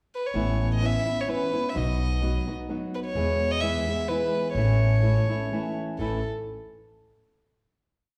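In a straight 3/4 at 128 BPM, this brief, festive and romantic mariachi piece in A lydian opens with a short pickup, the close violin entering at 0.1 seconds with an airy, floating, sul tasto melody of sentence-like motifs, joined at 0.3 seconds by a fingerpicked flamenco guitar strumming sixteenths in open chord shapes and a woody, dark pizzicato upright bass marking root and fifth on the main beats. The harmony moves from Aadd9 through B and E back to A before settling on a final chord at 6.0 seconds, all set in the generous bloom of a reverberant church or concert hall.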